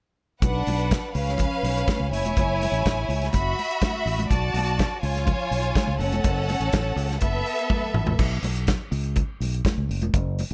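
This short fragment of a longer disco track sits in a small room ambience, with most parts placed close and up front. At 123 BPM in a straight 4/4 and B dorian, the mood is danceable and sultry, with the harmony moving through chords such as Bm, C#7, F#m9 and F#7sus4. A warm soul drum kit drives the groove with a tight kick, a medium-tuned snare, dark cymbals and a rolled-off top. Beside it sits a punchy fingered electric bass, direct and amped, low in its register. A lush studio violin section carries the second line as a bowed ensemble with rich vibrato, a focused tone and a smooth top, while high-tuned congas ring out in the background under hard hands. A drum fill at 7.7 seconds leads into a new section at 8.2 seconds, where the violins stop and the chords briefly drop out before Bsus2 and an F#7 voicing that omits the third, with bass, drums and congas continuing to the end.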